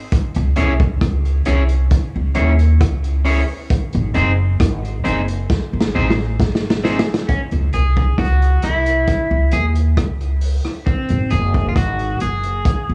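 A crunchy breakbeat drum kit with gritty vintage sampler texture, a punchy kick and a rolled-off top opens this laid-back, meditative roots reggae excerpt, joined by a woody, thumpy pizzicato upright bass sitting up front and by a twangy, slightly broken-up electric guitar with warbly pitch drift, while a drum fill from 5.5 s leads into a clean electric guitar solo at 7.3 s, the whole mix sitting in light studio reverb and cassette-tape room ambience.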